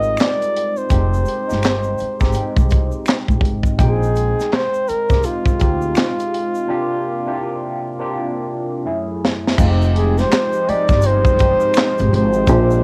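A close-miked flugelhorn with light vibrato leads this sultry neo-soul R&B excerpt in F dorian at 83 BPM, carrying a soulful melody over barky, clean tine electric piano with phaser, woody pizzicato upright bass and a background tube shaker with finger snaps, while a tight funk kit with a high-tuned snare, handclaps and crash enters at 0.2 seconds on swung sixteenths. The harmony moves through Fm9, Bb13sus4 and C9sus4 into a break at 6.7 seconds, where a drum fill leads through Gbm9. At 9.6 seconds, a smooth, detuned sawtooth analog pad with chorus and a slow attack slips in behind the return to Fm9, and the horn and drums carry a cassette-tape grit in an intimate home-recorded sound.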